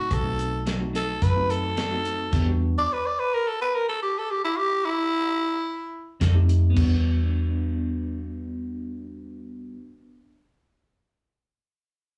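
A growling, breathy tenor saxophone with slapback echo sings a mournful soul blues line over mellow tine electric piano, round foam-muted electric bass, a muffled lo-fi drum kit and tremolo-tinged clean electric guitar stabs, then holds forth by itself from 2.8 seconds until it drops out at 6.2 seconds as the band returns, all heard as a live gig through the venue's PA with club reverb.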